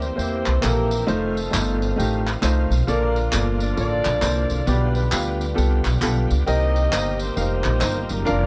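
Swung eighth notes at 134 BPM in 4/4 drive this soulful, reverent uptempo gospel excerpt, where a thumpy, woody pizzicato upright bass sits up front beneath a mellow horn section carrying the melody in octave doubling with light vibrato, while a clear grand piano enters at 0.2 s with audible action noise, a lightly overdriven tonewheel organ holds shouting chords through a slow rotary speaker and chorus vibrato in the background, and vintage tambourine, egg shaker and group handclaps add percussion, the whole framed by small room ambience, light reverb and a dark, warm production.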